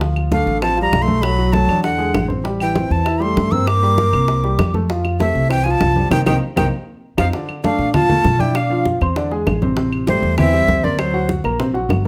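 A 197 BPM Afro-Cuban jazz groove in 4/4, danceable and lively, is built on tight, high-tuned bongos struck with hard hands, ringing low congas and woody claves from 0.2 s, over an up-front pizzicato upright bass with steel strings and an intimate grand piano with audible action noise, while a breathy, crisp flute with chiff carries the melody from 0.3 s above a mellow, close-miked tenor saxophone line, with a drum fill and band accent at 6.1 s leading into new harmony at 7.3 s, all in a moderate large studio reverb in this cut from a longer piece.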